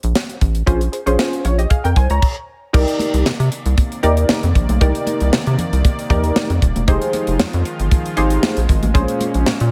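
A slick, late-night groove in early-eighties boogie funk, this excerpt moves at 116 BPM in a straight 4/4 around C minor. A rubbery, hollow square-wave bass and a tight funk drum kit sit up front from the start, the kit dry and polished with a medium-tuned snare, a tight kick, hi-hat and crash, and a touch of gated reverb. A punchy, dark polysynth comp with chorus joins at 0.7 seconds over Bbm9, and the band hits a brief stop just before the groove resumes at 2.7 seconds on Cm9. From there a brassy analog pad with chorus holds sustained chords beneath, and at 3.0 seconds very quiet, high-tuned congas with hard hands join, sitting close in the mix. The harmony moves from Cm9 to Fm9 and back to Bbm9 near the end, all set in a studio reverb.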